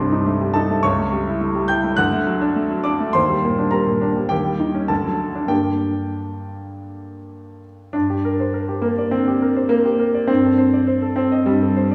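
A wet recital-hall reverb, about 1.8 seconds long, surrounds this recording, giving it the spacious ambience of a church or concert hall. At its center is a grand piano heard solo from start to finish, its tone clear, natural and up front. The music is a classical virtuoso study, played in 4/4 with a flexible, rubato feel that heightens its agitated, passionate character. The part ranges from deep bass notes at C2 up to bright treble at G6. The harmony moves through tense half-diminished and dominant colors before settling onto a minor chord at 5.5 seconds, and a new section begins at 7.9 seconds as the passage continues toward its cutoff at 11.9 seconds, clearly taken from a longer piece.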